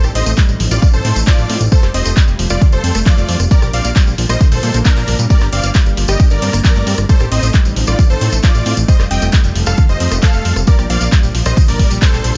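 Bittersweet and emotional, this uplifting trance cut moves at 134 BPM in straight 4/4 over a cycle of Adim, Fadd9, Bb and Gm, with a huge, airy supersaw melody, bright with vibrato, pumping and echoing through digital delay, a very quiet, catchy unison lead tracing a second line, a lush, full-bodied pad holding sustained chords, a round, evolving analog pluck spinning chorused, delayed and pumping arpeggios in the background, and a fat, mellow analog bass, also pumping, up front, all driven by a punchy analog drum machine with handclaps, hi-hat and rim click, a jingly tambourine, and an overdriven, layered electronic kick that enters at 0.4 s, in a dry, dark-topped mix.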